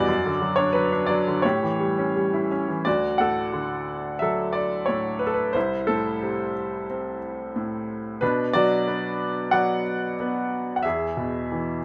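Rubato phrasing over a loose 4/4 pulse near 90 BPM shapes this relaxed, hopeful classical solo piano excerpt in D lydian, where a bright, intimate baby grand with long sustain and audible action noise sits up front in light reverb, moving from an opening passage over Bmadd9/F# and A7 into a new section at 2.9 s that travels through D, Am/C and Bm before arriving on E at 10.8 s.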